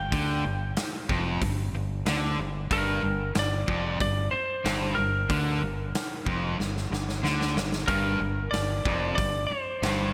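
A steady, straight four-beat pulse drives this aggressive, menacing hard rock excerpt, carried by a big acoustic rock drum kit placed up front, with a punchy kick, a medium-tuned snare and hi-hat ringing in a natural, roomy space. The kit breaks into a fill between 6.6 and 7.9 seconds. Underneath, a growling fingered electric bass with overdrive grinds out the low end, sounding direct and amped. A bright, overdriven electric guitar pounds out a low riff, joined by a darker, chorus-tinged semi-hollow guitar that sits in the background. Above them, a slightly broken-up, compressed lead guitar sings the melody up front, all over a single minor chord. Lush hall reverb and glossy 1980s-style digital production give the whole passage a big, polished sheen.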